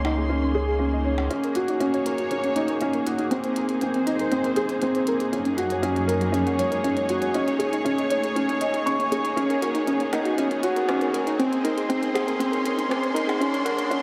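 This hypnotic, cinematic piano-and-strings electronica piece, cut from a longer work, opens with a felt-muted upright piano riff sitting up front, its mellow, intimate tone carrying audible action noise and a tape echo. Beneath it, a bowed studio string section holds dark, woody sustained chords with light vibrato, while a deep, round sine sub bass sounds only briefly at the start. A minimal electronic drum kit ticks quietly with clicky hi-hats, percussion blips and rim clicks, re-recorded in a large room. Almost at once a soft pluck joins in the background, its full-bodied arpeggios dressed in chorus and tape echo. From 1.3 seconds the music becomes a long build-up with a filter sweep, and a background riser enters at 4.0 seconds, as the chords cycle through Dbsus2, Ebm7, Abadd9 and Gb. A wet scoring-stage reverb with digital ambience surrounds the mix.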